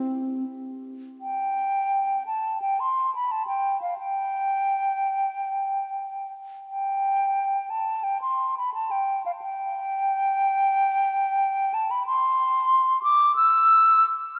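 A wet church reverb with a 3.4-second decay surrounds a solo concert flute that sits up front, its tone pure, mellow and hollow, with soft attacks and vibrato. This flowing, introspective baroque-style fantasia for unaccompanied flute moves at about 88 BPM in 4/4 with uneven, rubato beats, ranging from C4 to E6. The 14.4-second passage is cut from a longer piece, with a brief opening phrase giving way at 1.2 seconds to a longer second section.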